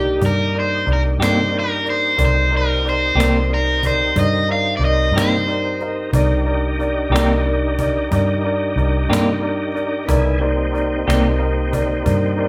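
Brooding and mournful, this slow blues in 12/8 rests on a single Cm7 chord, heard as a short cut from a longer performance. An overdriven semi-hollow guitar carries the melody up front with a bright, picked hollow-body bite, then drops out at 6.4 seconds. Beneath it, a clear upright piano adds intimate, woody accompaniment with audible action noise, while a tonewheel organ holds smooth, clean sustained chords with key click, a slow rotary speaker and chorus vibrato. A vintage fingered electric bass, foam-muted and round, sounds dark and up front, and a snappy acoustic cajon with snares enters at 0.2 seconds. From 1.2 seconds a clean electric guitar adds twangy picked accompaniment with tremolo, and the band, playing live in one room, is bathed in a moderate large studio reverb.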